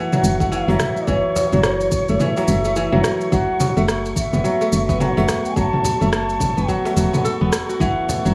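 Mystical and warm, this organic downtempo piece swings gently in 4/4 as a crisp kora rings out fingerpicked arpeggios up front and a mellow bamboo bansuri with vibrato carries the melody, both trailed by digital delay over a dark, wind-like noise texture in the background. A round, woody FM bass with tube saturation and sidechain pumping sits beneath a tape-tinged deep house kit of rim click, shaker and toms, a deep electronic kick, and a snappy cajon played with soft hands further back. At 7.8 s a very quiet, breathy pad with chorus and phaser slips in on the final chord.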